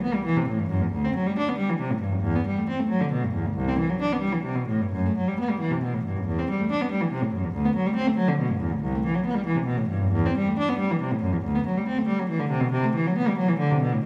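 A single bowed cello opens this baroque-style suite movement alone, its rich, reedy gut-string tone played in period style and sitting close and up front across a range from C2 to D4. The mood is serene yet dance-like, moving in 12/8 at about 92 BPM in dotted quarters with a flexible rubato. A wet recital-hall reverb, heard from further back in the room, surrounds the instrument through this brief excerpt of a longer piece.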